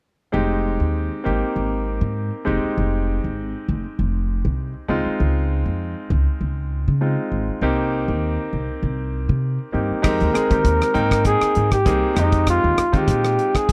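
A dry, close 1970s-style studio sound frames this slick, intense electric jazz fusion excerpt in F minor at 99 BPM, with a lightly swung 4/4 feel. A brilliant, polished concert grand piano and a woody, thumpy pizzicato upright bass on gut strings carry the opening chords from 0.3 seconds. At 10.0 seconds a damped 70s drum kit enters with a tight kick, dark cymbals, hi-hat and rim clicks, and a breathy trumpet solo follows with light vibrato and scooped notes.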